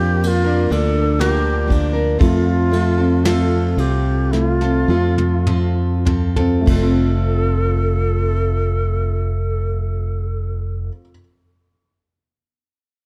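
A straight, unhurried 4/4 pulse eases back over the first 6.7 seconds of this gentle, hopeful acoustic folk excerpt, with a soft brush kit playing a fill from 4.3 seconds and dropping out at 7.0 seconds. Picked steel-string acoustic guitar with a full-bodied jumbo tone and a round, up-front fingered electric bass support a Bb to F movement. A mellow felt-muted upright piano plays arpeggios in the background, its action noise audible under a slapback echo, while a breathy, close-miked shakuhachi adds a bright second line with vibrato and a crisp chiff, all in a dark, lightly reverberant production.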